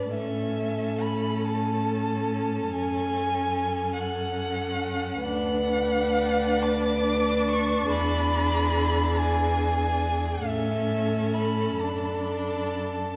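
Unfolding in 6/8 with free, breathing rubato, this slow romantic movement for string quartet is lyrical and tender, a fragment cut from a longer piece. A dark-toned first violin sits up front and carries the melody high in its range. A warm, close second violin with a soft attack plays a gentle line just beneath it. The viola and cello, both rich, fill out the texture: the viola, more distant, as a middle-voice accompaniment, and the cello, with a soft attack and placed up front, anchoring the bass. Each of the four players bows expressively with vibrato and portamento. The strings play together from 0.0 to 13.2 seconds through a progression that moves from A through F#m, Bm/D and E7 back to A before settling on D/F#, all bathed in the lingering, wet reverb of a church or concert hall.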